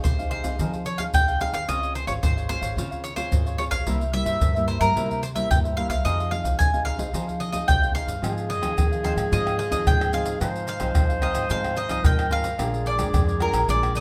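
Bittersweet yet lively, this samba and choro excerpt sets an up-front, woody picked mandolin melody over a crisp cavaquinho, a thumb-plucked classical nylon-string guitar with audible finger squeak, a thumpy pizzicato upright bass and close, hard-handed maracas, tight surdo, pandeiro and tamborim in a large studio room, with a soft-attack, smooth-topped clarinet adding a second line from 8.2 seconds.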